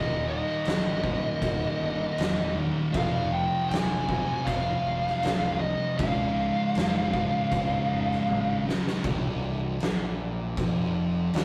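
This brooding, heavy stoner and doom metal excerpt moves at a slow, straight crawl, cycling through Eb, Fm and Db before landing on a stark C5 power chord at 9.0 seconds. A dark, compressed fuzz lead guitar sits up front, carrying a high picked melody before dropping away just ahead of that final chord. Beneath it, two thick, distorted fuzz guitars grind out a low picked riff in the background, one of them ending at the same 9.0-second change. A round, overdriven fingered bass adds a fuzzy floor. A very quiet tonewheel organ holds sustained chords through a slow rotary speaker, its lightly overdriven tone marked by third-harmonic percussion and vibrato. An oversized, low-tuned acoustic drum kit enters at 0.7 seconds with a boomy kick, a fat snare, toms and crash in a bright stone room, and it plays a fill from 8.3 seconds, all caught in a rough rehearsal-room sound with warm saturation and light reverb.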